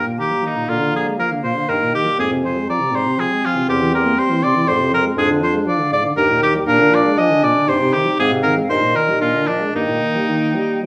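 A clear, up-front oboe carries the second line beneath a hollow, vibrato-tinged flute melody set back in the background, while mellow clarinet and warm French horn supply accompaniment and a punchy, distant bassoon enters on the bass at 0.7 s in this spirited, graceful, quick classical-period wind quintet passage in Eb major at 119 BPM in 3/4 with a rubato feel, all bathed in a wet, large studio reverb.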